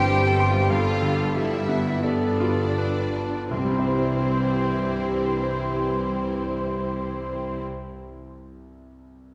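A bright, brilliant grand piano carries the melody up front with long sustain, leading a passionate, lyrical classical passage in C major that moves slowly and with rubato, easing down over the first 3.5 seconds. Behind it, lush violin sections sing a melody and second line, an airy silver flute plays a second line from a distance, and focused violas, smooth cellos and double basses fill the accompaniment and bass. Very quiet mellow French horns, trombones and tuba, soft trumpet stabs and barely audible round timpani drop out near 7.7 seconds, leaving the piano alone until 9.3 seconds, all heard from further back in a wet scoring stage reverb.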